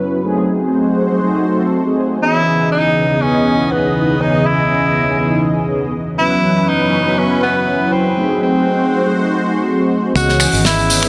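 Cosmic and sensual, this nu-disco excerpt moves at 121 BPM in C# minor with a light sixteenth-note swing, its chords shifting from G#7b9 through C#m9 and F#7sus4. From the opening, mellow synth brass sits up front, brassy and detuned with a sawtooth edge and a filter sweep, while a lush unison pad spreads thick, bright sustained chords beneath it through chorus and phaser, both breathing with sidechain pumping. At 2.2 seconds a tenor saxophone takes the melody, carrying light vibrato and a distant, roomy tone roughened by vintage 12-bit sampler grit and trailed by delay. At 10.2 seconds the groove arrives: a dry, mid-forward 70s drum kit with a fat snare, finger snaps, hi-hat and tambourine, a tight kick in the background, a dark, round, foam-muted fingered bass, and a barely audible riser. A moderate echo chamber reverb with a 2.5-second tail wraps the whole piece in a spacious glow.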